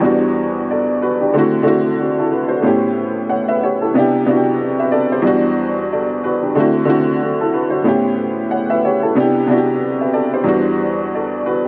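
A 92 BPM groove in 4/4 with a light 55% swing on the sixteenths sets a laid-back hip hop pulse for this moody, gritty piece, cut from a longer work. A warm upright piano plays solo for the full 11.7 seconds, ranging from E2 to F#5 and sitting present and up front. Its tone is worn, woody and slightly detuned, colored by a cassette tape effect and trimmed at both ends by high-pass and low-pass filtering. The harmony in E minor, tuned to A4 = 444 Hz, circles through Em7, D7, A7 and Cmaj9 twice before returning to Em7 at 10.5 seconds, where a new short section begins. A moderate plate reverb with a 3.4-second tail surrounds the piano, and lossy compression artefacts add to the grainy, lo-fi character.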